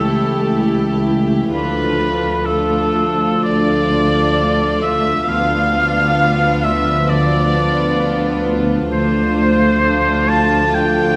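From the first moment, a symphony orchestra opens this serene, romantic slow movement in a flexible rubato, with a clear, up-front oboe and an intimate chamber violin section carrying a second line above the rich, floating melody of a soft studio violin section, while pure symphonic violas supply accompaniment and dark French horns hold sustained chords in the background, a very quiet concert harp rings out bright arpeggios, woody cellos and dark double basses anchor the bass, and a wet concert-hall reverb surrounds this short passage cut from a longer piece.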